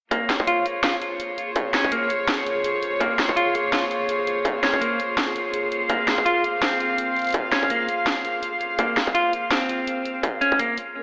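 A reedy, gut-string cello section holds sustained chords up front with a sidechain pump, while a clean, fingered electric guitar plays low-passed, delayed arpeggios over a layered kit of cracking, overdriven snare and bright hats and a distorted, high-passed electronic kick, with a soft, detuned pulsing texture in the background and an electronic swell at 11.0 s in this dark, spacious half-time drum and bass fragment, all set in an echo-chamber reverb with an AM radio sound.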